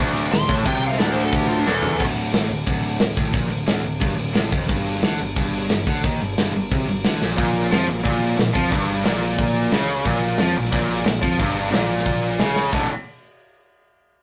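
Heavy metal in D harmonic minor at 179 BPM, this aggressive, relentless excerpt opens with a dark, high-gain lead guitar solo over a tight distorted rhythm guitar, a growly picked bass and an up-front acoustic drum kit with a tight kick and medium-tuned snare, the solo ending at 2.0 seconds as a drum fill closes it out. A bright, heavy high-gain guitar riffs up front alongside the background rhythm guitar, drops out after the opening, and returns at 7.4 seconds as the power chords move from D5 through G5 to Bb5. The rough rehearsal-room sound carries tube saturation and moderate reverb, with further drum fills marking the changes.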